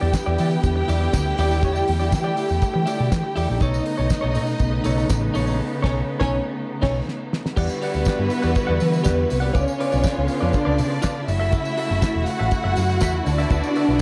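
A straight 4/4 disco groove at 121 BPM rides on a damped 70s drum kit with a fat snare, tight kick, dark cymbals, hi-hat, crash and handclaps, while a round, hollow-body picked electric bass sits up front and a jingly vintage tambourine stays in the background. In E dorian, this glamorous, sultry excerpt pairs a woody, close string section playing a second line with a distant string section holding soft-attack sustained chords with portamento, as a clean, twangy, compressed electric guitar fills in the accompaniment. The band hits an accent from 5.6 s, a drum fill at 7.1 s leads into a new section at 7.6 s, and the dark, lightly reverberant small-room production keeps a warm glow throughout.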